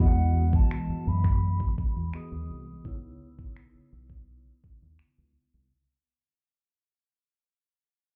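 A knocking electronic kick and finger snaps sit up front in this moody, late-night contemporary R&B fragment, alongside a dark, round, punchy fingered dub bass, a clean tine electric piano low-pass filtered and heard as if through built-in speakers, and a breathy, close-miked concert flute with a straight tone and soft attack, softened by low-pass filtering and trailed by delay, the mix muffled as though through a wall with club reverb as Emaj9 gives way to C#m7 at 2.9 seconds and a fade-out spans the full 5.7 seconds.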